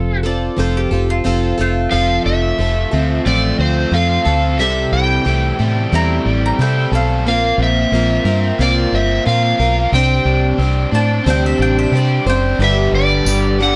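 Folk rock with a heartland rock lean, this hopeful excerpt moves at 90 BPM in a straight 4/4, led by a dark, overdriven slide guitar melody over a shimmering, octave-doubled twelve-string acoustic and a foam-muted, up-front electric bass, with a small room adding moderate reverb. A round, mellow mandolin adds a second line at the start and again from 6.0 seconds, while a double-tracked overdriven electric guitar riff joins at 1.9 seconds. As the chords move from F through C6, Bbsus2 and Csus2 to G at 12.6 seconds, a very quiet, reedy harmonium breathes sustained chords and a jingly tambourine sounds briefly near the close.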